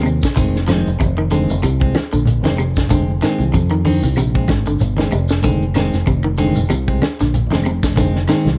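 Two picked electric guitars open this driving, funky afrobeat excerpt at 95 BPM on a lone Fm7 groove in F dorian, one twangy and slightly broken-up with subtle chorus playing low arpeggios, the other clean and stabbing higher, over a dark, round, punchy fingered bass up front, joined at 0.1 seconds by a tight funk kit with high-tuned snare and tight kick plus woody claves and a grainy shekere in the background, and at 0.4 seconds by bright, low-tuned congas, all caught dry with a cassette-tape home-recording character.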